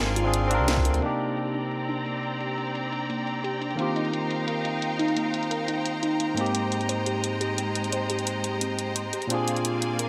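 Wrapped in light reverb and digital ambience, this melancholic, lush liquid drum and bass excerpt in C minor at 174 BPM sets a barky, dub-echoed tine electric piano and biting, vibrato-rich symphonic strings up front over a ringing, harp-like synth pluck whose arpeggios, soft behind chorus, phaser and delay, take on a filter sweep from 1.0 s. Meanwhile a menacing, saturated detuned saw bass swells only through the first second, a gritty, thumpy kick lands once at 0.8 s, and a layered garage kit with a cracking snare drives from 0.2 s through a progression moving from Bb7 through Cm9, Eb6 and Abmaj7 back to Bb7.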